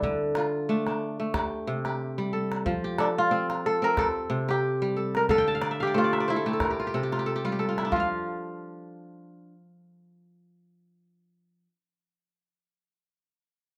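Flowing and warm, this West African traditional piece for strings and percussion moves with a swung lilt, its chords cycling through D minor, C and F. Two fingerpicked koras sit up front: one carries a bright, crisp melody while the other spins mellow, ringing arpeggios alongside it, and a kora fill arrives from 5.3 to 7.9 seconds. A deep calabash supplies percussion with a live-room feel until 8.2 seconds, and the closing passage drops its chords as the strings ring on in a small room.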